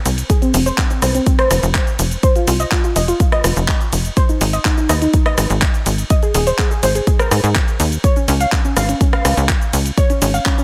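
A digital ambience frames this bittersweet, driving progressive house excerpt in F minor at 124 BPM, where a soft, round pluck with lush chorus, delay and sidechain pumping spins dark arpeggios from C4 to F5 over a tight, nasal sequencer bass, a tape-warm house kit of handclaps, hi-hat, ride cymbal, rim click and shaker re-recorded in a large room, and a punchy, up-front electronic kick entering at 0.3 seconds, as the chords move from F5 to Ab5 at 4.2 seconds and to Db at 8.0 seconds.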